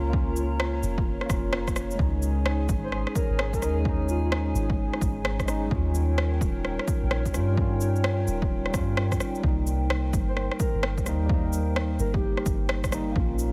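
A clean tine electric piano, a warbling, detuned tape-like pad and a deep, round 808-style bass open this rainy, ghostly future garage excerpt, all three pumping against the beat, with the piano trailing tape echo and the pad wrapped in chorus. A punchy, overdriven electronic kick and a gritty shaker and rim click drive a swung groove through a drifting progression over a bed of vinyl crackle and light reverb. A soft, breathy, flute-like synth lead with vibrato floats in at 2.8 seconds and again at 10.3 seconds, its chorus and tape echo adding to the nostalgic haze.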